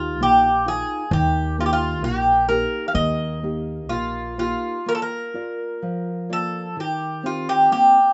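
A rough home-demo sound with small-room reverb and a top end that stops at 7.9 kHz frames this nostalgic, tender fado-style ballad fragment in a loose, rubato 2/4, where an up-front Greek bouzouki carries the metallic, double-strung melody with some octave-doubled strings over fingerpicked classical nylon-string guitar and a woody pizzicato upright bass on steel strings that stops at 4.5 s.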